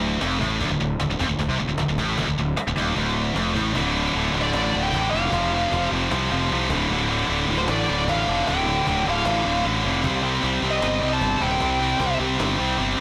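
Aggressive and epic, this straight 153 BPM heavy metal excerpt in D minor drives two bright, picked high-gain guitar riffs over a growly, fuzz-laden fingered bass up front, with a woody, softly handled cajon in the background whose fill at 3.0 seconds leads into a half-time passage where a distorted lead guitar with digital delay carries the melody from 4.4 seconds, all wrapped in a blown-out, overdriven digital ambience.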